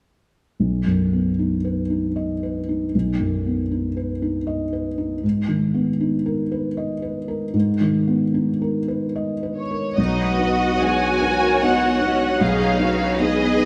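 A felt-muted upright piano, dark and intimate with audible action noise, plays alone in this bittersweet, rubato cinematic film-score excerpt in 3/4 until a smooth, vibrato-rich violin melody enters at 9.6 s, joined at 10.0 s by lush bowed second violins, violas and cellos, with the whole ensemble set in a wet scoring-stage reverb.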